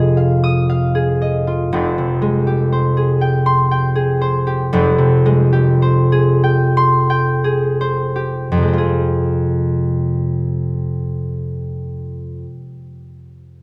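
A concert harp, fingerpicked, ringing and up front in a wet recital-hall reverb, plays this gentle, wistful classical excerpt alone in a rubato 6/8, slowing from 0.2 to 8.5 seconds as it moves from a minor-seventh chord to a minor add-nine and settles on a plain minor chord at 8.5 seconds.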